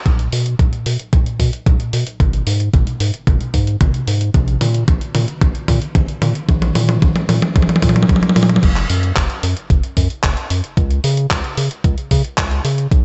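At 0.1 seconds a thumpy electronic kick, a round analog bass and a clean 12-bit drum machine all start together in this romantic, danceable italo disco piece, which is cut from a longer track. It moves at a straight 112 BPM in 4/4, tuned slightly low to A4 = 438 Hz. The dark bass mixes square and sine tones with a fast-attack filter pluck, then sustains deep notes from F#1 up to C#3. Up front, the sampler-style drum machine brings crash cymbal, handclaps, hi-hat and toms bathed in gated reverb, and it carries a drum fill through the opening section until 8.6 seconds, when a second section begins. The kick and drum machine have a tape-warm character, as if re-recorded in a small room. The whole mix sits in light reverb with a rolled-off top end, giving it a mellow, slightly vintage sheen through to the close at 13.0 seconds.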